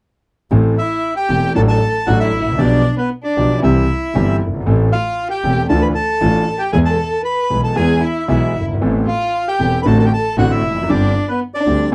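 Dry and close, this recording has the intimate, unadorned sound of a 1970s studio session, with little reverb around the players. It is a dramatic, melancholic tango in A minor at 116 BPM in 4/4, taken with a rubato feel, and this brief cut from a longer piece opens at 0.5 s with piano and double bass. The clear concert grand sits up front as accompaniment, with deep bass, short sustain and a smooth, vintage character, while the bowed double bass, one player with vibrato, adds a focused, boxy low end beneath it. At 0.8 s the bandoneon enters with the melody, reedy, bright and airy and placed up front, and a bowed violin joins as a second line, distant and expressive, with a soft attack, vibrato and portamento. The harmony moves from Am through D/A, G7/B and C, returns to Am, touches Dmadd9 and E, then turns to Amadd9 and D7/A before resting on Gsus4 as the passage breaks off at 11.9 s.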